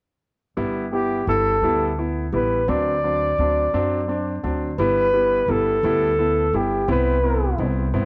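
Romantic and swaying, this short passage from a longer pop ballad in six-eight unfolds at an unhurried pace over a gentle chord cycle that settles on a major seventh. A bright, polished concert grand piano carries the accompaniment in its middle register, its brilliant tone colored by a cassette-tape grain. Beneath it, an upright bass plucks woody, thumpy notes with the snap of steel strings, both instruments entering together at 0.6 s and playing through to 8.1 s. A flugelhorn takes the solo melody from 0.9 s, its soft attack, gentle vibrato and jazz-inflected phrasing giving it a mellow, roomy presence. A moderate spring reverb and the intimate character of a home cassette recording wrap the whole in a homespun, nostalgic glow.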